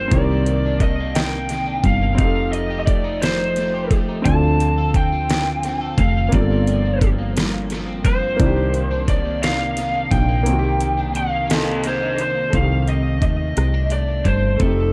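An echo-heavy, nearly dry mix carries this sultry, late-night slow six-eight R&B cut in C dorian at 58 BPM, where a lo-fi, overdriven lead guitar through a small cranked amp sings the melody up front over a slightly broken-up second guitar with analog chorus, a clear, intimate baby grand with audible action noise, a growly, round fretless bass with lush chorus, and an electronic drum kit with a knocking kick, deep snare and metallic hats. The chords move through Cm9, F9, Dm7 and Gm11 and back to Cm9, the kick drops out from 10.5 to 12.5 seconds, and the harmony then settles on Cm69.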